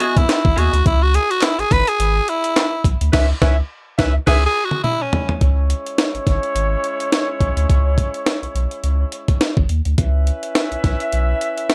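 A driving, funky groove at 105 BPM in C# minor, this short cut from a longer piece swings its sixteenths over a C#m7 chord. A raspy, punchy tenor saxophone takes an up-front solo with vibrato and tape echo from the start until 5.3 seconds. An electric guitar at the edge of break-up, run through wah and lush chorus, offers only a brief picked, compressed flicker at the very opening. Underneath, a gritty, pitched-up breakbeat kit with a thumpy kick and high-tuned snare pushes the track throughout, joined by a crisp, band-limited group handclap sitting in the background until 2.7 seconds and a deep, round sine sub bass that stays up front. A tight horn section with octave doubling and light vibrato enters at 3.1 seconds for a band accent, while a drum fill leads into the second section, where the horns carry the line over the bass and drums in a dry room with little reverb.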